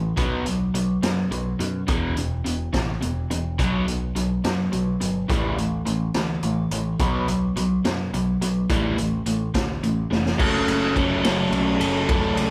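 This moody, bittersweet indie rock excerpt sounds like a band playing live together in one large studio, with a moderate reverb that lends the room a sense of space. It moves at 70 BPM in a straight 6/8, felt in dotted quarters. A crunchy, double-tracked overdriven guitar sits up front with a phaser, playing the riff over power chords built on B, E and A. A growling picked electric bass, direct and amped with its own overdrive, runs underneath in a low register. The raw garage drum kit enters at 0.2 seconds, gritty and saturated with a boomy kick, a medium-tuned snare, a rolled-off top and hi-hat, ride and crash cymbals. A drum fill at 10.1 seconds leads into a new section at 10.4 seconds, where the harmony turns to F# minor before the cut at 12.5 seconds.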